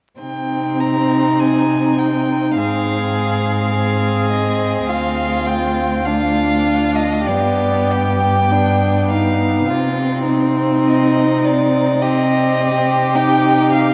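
An up-front, close-miked cello with soft attacks, vibrato and expressive portamento anchors this yearning, melancholic excerpt of a slow romantic string quartet movement in free rubato, while a clear, focused solo violin sings the melody over a second violin's smooth, gliding line and a warm, vibrato-rich viola accompaniment, all bowed by single players and bathed in the long echo of a vast cathedral under a layer of vinyl crackle.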